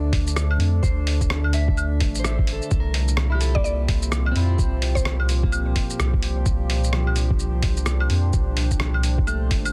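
A dense, heavily limited modern master sits in digital ambience, giving this short cut from a longer future garage piece a rainy, wistful air at 128 BPM in 4/4, with a 61% swing on the sixteenths and tuning at A4 = 439 Hz. A warbling, nostalgic pad with chorus and its own reverb holds slow-blooming chords, moving from D7(no3) to C7sus4 at 2.7 s, while a clean, picked electric guitar plays accompaniment through analog delay. Underneath, a deep, round dub sub bass carries the low end and sits loudest, pumping with the sidechain alongside the pad and guitar. The drums have a lo-fi, sampler-style character: a pitched-down, thumpy kick with tape warmth, and a muffled kit of claves, hi-hat, rim click and shaker re-recorded in a small room, with soft clipping on the snare. From 3.5 to 5.3 s a woody, detuned mallet-like synth pluck adds a brief melody high in the range, touched with chorus and analog delay.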